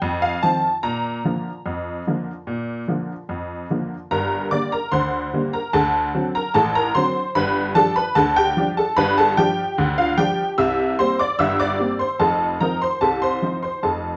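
A detuned, jangly honky-tonk upright piano carries this short ragtime cut alone from 0.0 to 14.2 seconds, sitting up front with a bright, vintage character and short sustain. The mood is jaunty and cheerful, moving at 74 BPM in a straight 2/4. The piano covers a broad span from F1 up to E6, opening on F7 and Bb before a new passage at 4.1 seconds that moves through Gm, D7, G7 and C7 and returns to F7 at 12.2 seconds. A moderate small-room reverb lends a touch of space. Cut from a longer piece, it feels like a lively glimpse of an old saloon-style rag.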